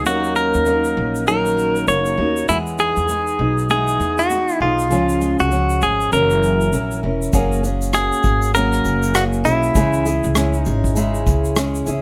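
A bright, twangy clean electric guitar carries the melody up front with plate reverb over fingerpicked and picked steel-string acoustic guitars, a woody, thumpy pizzicato upright bass and a grainy tube shaker in this reflective, wistful acoustic pop excerpt at 99 BPM with a light 16th-note swing, moving through chords like D#m7, Emaj7 and F#7 before an airy unplugged drum kit with a tight kick, rim click and bundle sticks joins at 7.3 seconds as the harmony shifts to F#add9 and C#m.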